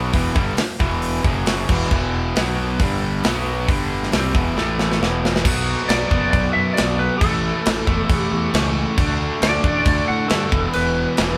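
A straight 4/4 hard rock pulse at 136 BPM drives this menacing, heavy excerpt in E minor, with a tight metal drum kit up front, its bright cymbals and tight kick punching through a fill from 4.6 to 5.4 seconds. Two distorted electric guitars and an overdriven semi-hollow guitar sitting in the background churn out riffs over a growly, fuzz-laden fingered bass, though the very quiet double-tracked guitar drops out at 5.4 seconds. From 5.9 seconds a slightly broken-up, twangy lead guitar carries the melody above the band, which sounds like a group playing live in one room with moderate studio reverb.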